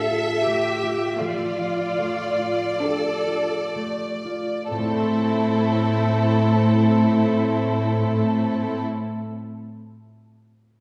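A clear, lush cello section carries the bass up front in this elegiac, melancholic slow romantic movement for symphony orchestra, drawn from a longer work and played with rubato in 4/4. Rich violin sections sing the melody and a smooth second line with vibrato, a bright, intense viola section joins the accompaniment at 1.2 s, and a thumb-plucked concert harp spins ringing arpeggios that linger until 9.1 s. The opening slows as the harmony moves from Dm/A to Am at 4.7 s, all set in the wet reverb of a concert hall heard from further back in the room.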